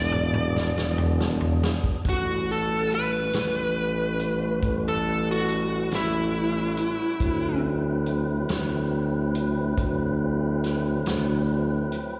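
A gritty, soulful slow blues in 12/8 at 47 BPM begins with a smooth overdriven electric guitar, a fat tonewheel organ through a slow rotary speaker and a mellow tuba with scooped notes on bass, over an E9 chord as a vintage drum kit with a punchy kick plays a fill. From 2.1 s the harmony moves to A13 and then D13 while the guitar takes a solo in A mixolydian, its picked lines carrying slapback echo and digital delay until it stops at 7.6 s, and the organ's key click and the tuba's vibrato carry on to the close. This excerpt sounds like a live gig heard through the venue's PA, with recital hall reverb and small room ambience.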